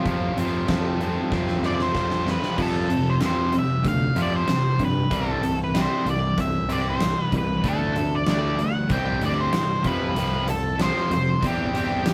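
A driving, swaggering classic rock passage at 95 BPM opens with two bright, picked distorted guitars playing the riff and a warm overdriven guitar adding a brief second line that stops at 1.3 seconds, joined almost at once by a growling, overdriven fingered bass and a huge arena drum kit with a punchy kick and bright cymbals. A drum fill runs from 1.3 seconds, and a dark, fuzzy octave-fuzz lead guitar melody enters up front at 1.7 seconds, as the chords move through F, C, D5 and Cadd9. The rough rehearsal-room sound carries light reverb and tube saturation.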